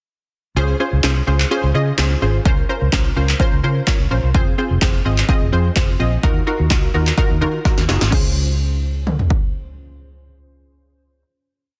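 A dense, heavily limited modern master with light reverb and a digital ambience frames this short, summery and carefree dance-pop piece in a straight 4/4. A punchy analog drum machine, tape-tinged and re-recorded in a small room, sits up front with a four-on-the-floor beat of kick, snare layered with handclaps, crash cymbal and toms, entering at 1.0 s and rolling into a fill just before the final chord. Beneath it, a vintage muted fingered electric bass plays a dark, round, foam-muted syncopated line, amped and up front, breathing with sidechain pumping. A punchy chord stab built from detuned sawtooth and square waves gives full-bodied filter plucks with a fast attack and decay, voiced close in an eighth-note rhythm, coloured by chorus and also pumping. The chords move from Dbmaj7 through Bbmadd9, Fm and Ebmadd9 before returning to Dbmaj7 at 8.1 s for a final chord, with bass and stabs ringing out until 11.2 s.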